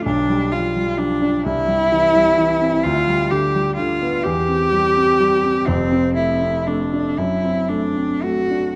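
Lyrical and warm, this short romantic classical passage for cello and concert grand piano is cut from a longer piece and moves at a slow 36-44 BPM in dotted quarters, in 6/8 with a flexible rubato feel in C major, tuned to A4 = 439 Hz. A single bowed cello carries the melody between C4 and G4, its tone rich and focused with expressive vibrato and a smooth top. The grand piano accompanies from F1 up to D4, offering deep bass and a short sustain, slightly quieter than the cello. Both instruments sit up front and play together from 0.0 to 8.8 seconds, set in a moderate recital-hall reverb with a 1.3-second decay. The harmony moves through G7/B, C, G/D, C/E and Dm7/F before closing on D7/F#.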